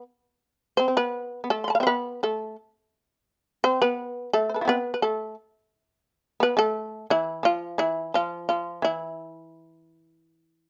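A plectrum-plucked shamisen carries the melody, entering at 0.8 seconds and ranging from E4 up to C6 with a buzzing, percussive bite that sits up front in the mix. This short excerpt of Japanese traditional music is calm and austere, in E miyako bushi with the tuning set to A4 = 435 Hz. The pulse is around 85 BPM in 4/4, but the playing is rubato and breathes freely. A second shamisen opens the recording alone at 0.0 seconds and holds a lower second line from E3 to C5, a little quieter than the lead. Both fretless instruments sound powerful and close, captured by detailed microphones with a light touch of reverb, and they play together until the fragment is cut off at 10.7 seconds.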